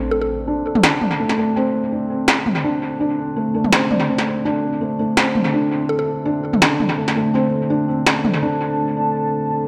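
Tense and dark, this half-time drum and bass excerpt at 166 BPM, with a light swing, opens on a felt-muted upright piano playing soft, mellow arpeggios up front, its thick felt and audible action noise colored by a filter sweep and analog delay. A deep, detuned ambient pad holds slow-attack sustained chords with chorus and vintage 12-bit sampler grit, while a woody, round mallet-like synth pluck sounds a brief note at the start and again near 5.9 seconds. From 0.8 seconds an electronic industrial drum kit pushes forward with a clanging snare and toms, all set in an echo-heavy mix with moderate chamber reverb.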